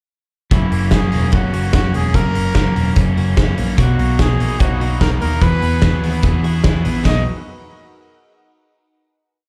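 A clear, close-miked trumpet carries a motif-based pop melody from 0.5 seconds over crunchy overdriven guitar strumming eighths, a hollow-bodied semi-hollow guitar fingerpicking a roll pattern, a dark foam-muted bass driving eighth notes with slides, and a loose, roomy drum kit with a fat snare and off-beat open hats, all in a bright, nostalgic jangly indie pop piece at 147 BPM in B major, where a swirling phased analog pad joins in the background at 3.8 seconds before everything settles onto a final Bmaj7 chord, heard as a live gig through the venue's PA with club reverb.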